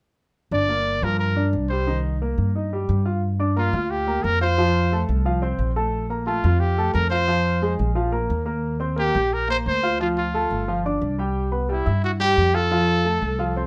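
Heard in a moderate studio reverb, this passionate, danceable Latin piece in G minor, cut from a longer work, moves at 177 BPM as a bright, punchy trumpet with vibrato carries the solo melody over a warm grand piano with long sustain and a woody, thumpy pizzicato upright bass, all three up front from 0.5 s, with a new section arriving at 3.2 s.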